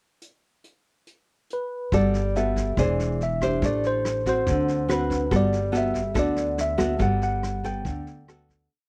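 The recording is dry and close, with the feel of a 1970s studio session and a warm, fingerpicked nylon-string guitar sitting up front. This is a short, complete bossa nova piece in G major at 141 BPM in straight 4/4, relaxed and sophisticated in mood. A vintage brush drum kit opens the pickup bar at 0.2 s, its brushes working a bossa groove across a medium-tuned snare, punchy kick, rim click and hi-hat with a rolled-off top. A worn, slightly out-of-tune tine electric piano soon follows with hook-like motif phrases. At 1.9 s the classical-style guitar brings thumb bass and syncopated plucked chords, and a woody, thumpy pizzicato upright bass plays a two-feel root-and-fifth line. The harmony moves through Gmaj9, E7alt, Am7 and D6 before returning to Gmaj9, and the piece fades out from 7.0 s.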